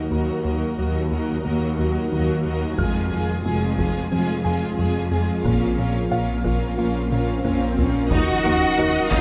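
Close, detailed microphones and light reverb frame this tense, vast cinematic excerpt, a hybrid orchestral and electronic film score in Eb dorian at 90 BPM in straight 4/4. From the start, bowed string sections with vibrato move through Ebm, Fm and Bbm: dark violins carry a second line, lush violas fill the accompaniment, and focused cellos join a background double bass section on the bass. An ethereal, airy pad with ensemble chorus and built-in reverb sustains chords beneath them, while a felt-muted upright piano adds soft, intimate texture through tape echo. A very quiet, tine-like synth pluck spins arpeggios, and a punchy analog bass plays a riff. A taiko ensemble with heavy sticks enters at 2.8 seconds, and an electronic swell rises from 7.0 seconds alongside a drum fill. At 8.1 seconds an impact lands on the return to Ebm, as mellow French horns hold chords and a very quiet violin section takes the melody on a high Gb.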